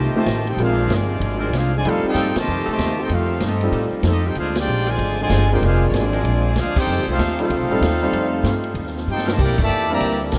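Big band swing, brassy and joyful, cut from a longer piece: a brilliant trumpet section carries the melody over a clear trombone section's second line, with a present grand piano in the background, a woody pizzicato upright bass up front, a swinging drum kit with a punchy kick entering at 0.3 seconds and playing a short fill near 9.1 seconds, and a very quiet, bright saxophone section holding sustained chords from 1.4 seconds, while full-band accents punctuate the groove inside a vast, echoing cathedral space.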